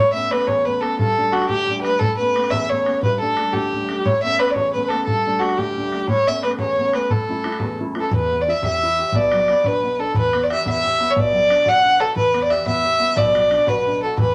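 Bright and rollicking, this Celtic jig moves at 118 BPM in a straight 6/8, set in A mixolydian with tuning at A4 = 438 Hz, and it is cut from a longer piece. A single bowed fiddle carries the melody up front with a dark, woody tone and a smooth top, played sul tasto with light vibrato and portamento. An intimate upright piano accompanies from the start with a warm, slightly detuned sound, short sustain and audible action noise. A tight, damped bodhran enters at 0.3 seconds with an acoustic, live-room feel. At 8.1 seconds the harmony shifts from alternating Aadd9 and Gsus2 to a back-and-forth between Em and Bm, and a thumpy pizzicato upright bass with steel strings joins in the background. The whole sits in a wet studio reverb.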